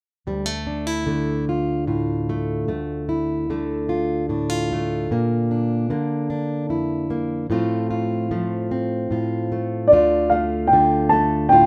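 Haunting and intimate, this slow acoustic folk piece in 6/8 and D minor, at 50 BPM counted in dotted quarters, opens with a full-bodied, up-front fingerpicked jumbo steel-string guitar moving from Dm through Bb and F/A, until a dark, woody, vintage-toned upright piano enters with a mellow high melody at 9.9 seconds over the return to Dm, all touched by light reverb in a short cut from a longer piece.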